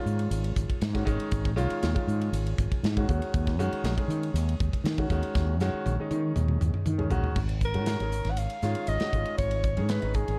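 Electric jazz fusion at 119 BPM in a straight 4/4, intense and funky, cut from a longer piece, where a natural concert grand piano with deep bass comps over G#5 and D#m7 chords, an up-front fretless electric bass and a tight acoustic drum kit with a medium-tuned snare drive toward a drum fill from 5.3 to 7.4 seconds, and then at 7.6 seconds a breathy, whispered soprano saxophone enters with an intimate, soft-attack subtone solo over G#sus2 and C#add9/G#, all in a dark, dry production.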